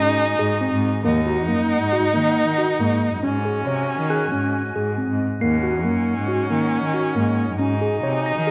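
Contemporary chamber music in an uneven 5/4 meter, this short excerpt cut from a longer piece feels restless and playful. A worn, slightly out-of-tune electric piano with light overdrive, heard as if through its built-in speakers, carries arpeggios across the whole passage. A bowed solo cello, focused and up front with vibrato, holds the bass, while a smooth, even solo viola sings a second line beside it. In the background a tight, classical-style woodwind section sustains chords with vibrato, and at 4.1 seconds a close-miked glockenspiel played with soft plastic mallets adds a dry, bell-like, ringing shimmer. The harmony sways between Ab7sus4 and Eb minor chords, and the dark, warm production sits in a moderate scoring-stage reverb.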